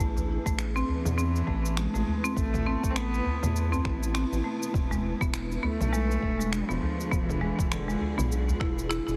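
Warm and earthy, this short fragment of organic downtempo moves with a lightly swung sixteenth-note feel. A blurred, granular cloud pad holds sustained chords, shifting from Amadd9 to E7b9 at 4.7 seconds, with shimmer reverb and sidechain pumping. Beneath it, a round analog bass stays mellow and up front, and a buzzing marimba struck with hard mallets plays woody, dry arpeggios through tape echo and shimmer reverb. A deep house kit adds cabasa, finger snaps and toms, and a layered electronic kick drives the groove, while a deep, band-limited udu enters at 0.2 seconds. From 0.9 seconds a single bowed cello carries the melody with a pure, floating sul tasto tone, treated with tape echo and shimmer reverb, and the whole mix has a heavily compressed, radio-like sound in a light reverb.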